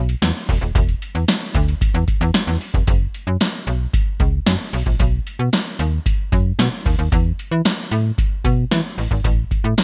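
Bright, dry 1980s-style digital production frames this funky, late-night early-eighties boogie funk fragment at 113 BPM, where a snappy, up-front slap-like FM bass with a fast, decaying attack runs beside an electro analog drum machine with a deep kick, punchy snare, metallic hi-hats, gated reverb and the air of a large room, the music moving into a new section at 2.9 seconds.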